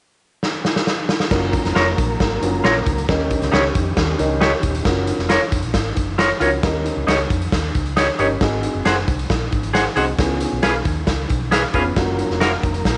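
Bright, twangy stabs from an electric guitar played through a small old amp, slightly broken-up and lo-fi, cut through this danceable, uptempo 1960s-style soul passage at 135 BPM in F# major, taken from a longer piece. A gritty, saturated garage drum kit opens with a fill at 0.4 seconds, its punchy kick, medium-tuned snare, hi-hat and crash sitting up front in a bright stone-room sound with a rolled-off top. From 1.3 seconds a round, foam-muted fingered electric bass and a mellow, boxy grand piano with long sustain join in. A clean tonewheel organ with chorus vibrato, key click and a stopped rotary speaker holds sustained chords in the background, dropping out after the opening phrase and returning near the end. The harmony moves from F#maj7 to D#7 twice, then through G#7 and C#7 before arriving back on F#maj7. Light small-room reverb and a softened high end give the groove a warm, vintage glow.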